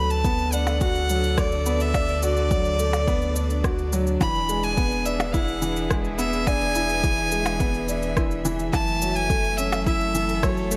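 Electronic shaker, percussion blips and rim click enter at 0.1 seconds, joined at 0.2 seconds by an overdriven, deep electronic kick driving a straight 4/4 pulse at 106 BPM, both bathed in studio reverb, in this cinematic, hypnotic piano-and-strings electronica cut from a longer piece. A woody upright piano riff and a round sine sub bass with sidechain pumping sit beneath a distant chamber string quartet holding sustained chords, also pumping, over Bm7/D, E7 and F#m7. Up front, a close solo violin carries the melody with an airy bow, light vibrato and a nasal, earthy tone, all under light reverb.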